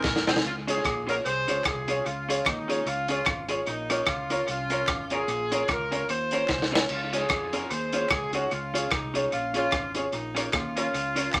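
Ska with an upbeat, bouncy swing, cut from a longer piece, led by an up-front horn section carrying the melody with light vibrato over a gritty, saturated breakbeat drum kit that opens with a fill and adds another at 6.5 seconds, with dub echo on the drums and on a dark hollow-body jazz guitar tucked in the background, woody, slightly detuned upright piano stabs, a round fingered electric bass and a very quiet, crisp group handclap, set in a moderate studio reverb.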